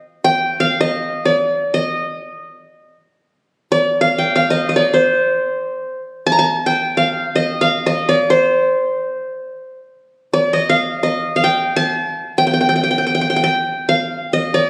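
A solo qanun, played with fingerpicks, sings up front with a bright-edged, triple-string voice between C5 and Bb5 in free time, giving this soulful, melancholic excerpt of a Turkish makam piece, tuned to A4 = 437 Hz, its phone-in-the-room sound bathed in a wet recital hall reverb for its 14.7 seconds.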